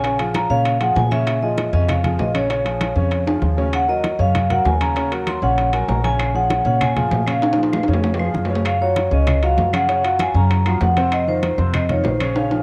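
A home cassette recording colored by moderate spring reverb, this fiery, driving Afro-Cuban jazz fragment in Bb minor at 195 BPM sets a dark, smooth vibraphone melody with its motor off over intimate upright piano with audible action noise, an up-front woody pizzicato upright bass, bright, dry congas, ringing metal-shell timbales, very quiet round bongos and distant claves that join at 6.2 seconds, with drum fills near 3.3 and 7.4 seconds.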